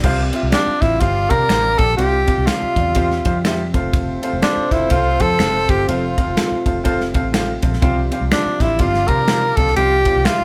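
Warm and uplifting, this uptempo 1960s-style soul clip moves at 123 BPM in a swung 4/4 over Csus4 and F chords, with a punchy, up-front drum kit, a dark, round muted electric bass, a woody upright piano with audible action noise, and a very quiet, fat tonewheel organ with key click and slow rotary speaker. At 0.5 s a breathy, up-front tenor saxophone takes the melody with vibrato, joined by a very quiet ringing vibraphone and soft finger snaps. A mellow, very quiet horn section in octave doubling adds a second line, and light reverb gives the sense of a band playing live in one room.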